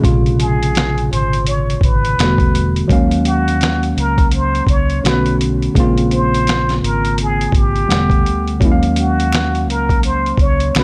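Lo-fi hip hop with a reflective, melancholic mood and a swung groove, heard as a short excerpt from a longer piece. A worn, slightly out-of-tune tine electric piano with cassette-tape character and a low-pass filter carries the Bbm7, Em11 and Ebm11 changes over a dark, round fingered electric bass and a gritty, compressed sampler-style drum kit that sits up front with a thumpy kick, fat snare, hi-hat and finger snaps. From 0.4 seconds a breathy, distant, intimate plunger-muted trumpet plays a whispered jazz solo through a low-pass filter, and a very quiet acoustic finger snap joins at 9.3 seconds in a dry mix with little reverb.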